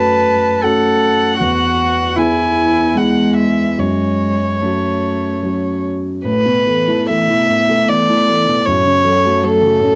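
Reflective and melancholic, this short cut from a longer neoclassical piece for piano and strings moves in an unhurried three-beat metre with uneven, rubato timing. A single bowed violin carries the melody from the start, its tone warm and airy with light vibrato, a soft attack and the hushed, intimate colour of playing over the fingerboard, set close and up front and lightly coloured by cassette tape. Beneath it a solo cello supplies a second line, dark and smooth on top, also bowed near the fingerboard with vibrato and a gentle onset. A grand piano provides the accompaniment throughout, dark, mellow and somewhat boxy in tone, placed up front in the mix. The harmony drifts from F#m to E and back, then opens onto Asus2 at 6.3 seconds before settling on F#m again, all within a moderate studio reverb that keeps the homemade cassette recording feeling close and personal.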